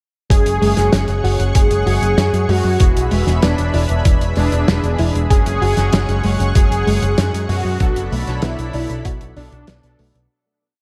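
A dark, lightly reverberant production frames this nostalgic, driving synthwave piece at 96 BPM in F# minor, moving over F#sus2, E and Bm7 chords. A thick, detuned unison sawtooth lead with vibrato, chorus and delay repeats its riff melody, doubled very quietly by a dreamy FM electric piano with tremolo. Beneath it, a silky, sidechain-pumping string pad sustains chords, a soft, nasal pluck loops a 12-step arpeggio that drifts against the bar, and fat analog brass holds chords with syncopated pushes in the background. Up front, an overdriven, punchy picked bass pulses in sequenced sixteenths, and a thumpy electronic kick drives until 9.2 seconds. A smooth, rolled-off soul kit supplies an 80s machine backbeat of snare and hi-hat as the track fades out from 7.0 seconds.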